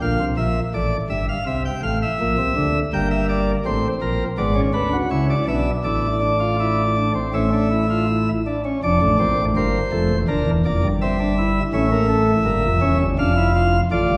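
A chamber organ's full principal chorus, up front with a crisp chiff, carries this stately yet lively baroque-style three-part fugue in straight 4/4 through a wet recital-hall reverb, spanning its deep pedal to high treble in a brief passage from a longer piece that moves into a new section at 8.8 seconds and settles from A onto Dm/F at the close.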